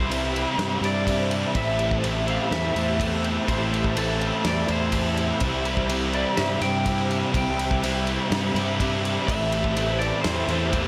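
An up-front, biting overdriven guitar drives this hazy, brooding slice of shoegaze and dream pop, its picked riff smeared by reverse reverb. Beneath it a thick fuzz guitar plays its own low riff with distortion and a touch of chorus, while a growly, punchy fuzz bass played with the fingers adds overdriven weight. Higher up, a twangy, lo-fi guitar through a small old amp carries the melody with delay, and a vintage string machine voicing violas holds soft, mellow sustained chords with ensemble chorus in the background. A loose indie drum kit with a tight kick, medium-tuned snare and ride cymbal keeps a straight 124 BPM pulse in 4/4, captured in a small room with a warm, rolled-off top. The harmony drifts between Cmaj7 and Am7 in A minor, and the whole mix is soaked in plate reverb for a dreamy, clouded sound across this short cut from a longer piece.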